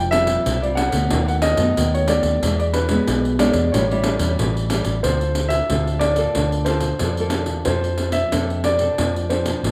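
This samba and choro excerpt moves at a lively 92 BPM in straight 4/4, with a bittersweet mood, and the music settles into D minor at 5.0 s. A warm grand piano carries the melody in a narrow upper register. A classical nylon-string guitar supplies fingerpicked accompaniment with audible finger squeak. A vintage foam-muted fingered electric bass sits underneath with a dark, round, punchy amped tone. A jingly pandeiro, played with hard hands, enters at 0.1 s and sounds both up front and distant, as if in a large room. The harmony travels from Fsus2 through B7/D# and A7 before turning to Dm7 and Bbmaj7/D. All of this sits in light reverb.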